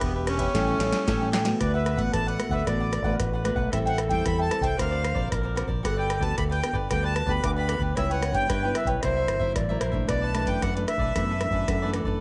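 A sunny, festive samba-choro excerpt in D major at 113 BPM opens with a reedy, slow-beating accordion melody up front, a mellow, distant clarinet second line, crisp picked cavaquinho, fingerpicked nylon-string guitar with fresh strings, a fingered electric bass shaped by an envelope filter, and an analog drum machine whose deep kick, punchy snare and metallic hats, re-recorded in a large room, play a fill from 0.5 to 1.6 seconds, with the accordion stopping at 11.9 seconds and light reverb over close, detailed microphones.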